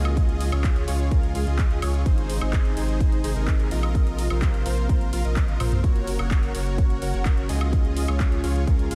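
With a light reverb over the whole mix, this anthemic, triumphant festival progressive house excerpt sets a huge, detuned supersaw riff trailing diffuse ambient delay over a lush, warbling chorused pad and a deep, saturated sine sub bass, all three sidechain-pumping alongside a punchy, up-front electronic kick, while an overdriven big-room kit of handclaps, metallic hi-hats, ride, toms and woodblock drops a fill at 5.5 seconds.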